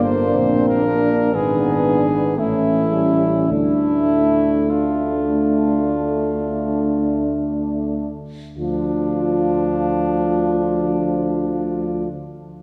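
Classical, hymn-like brass band music in D minor, solemn and yearning, moving at a slow, rubato 43-62 BPM in 4/4 and slowing down through the first 8.6 seconds of this short cut from a longer piece. A warm, present cornet carries the melody over a mellow French horn section with light vibrato on the second line, while a clear euphonium and a distant, roomy trombone fill in the accompaniment beneath. An up-front tuba anchors the bass, all of it bathed in a wet church reverb as the chords move from Gm through G#dim and A to Dm.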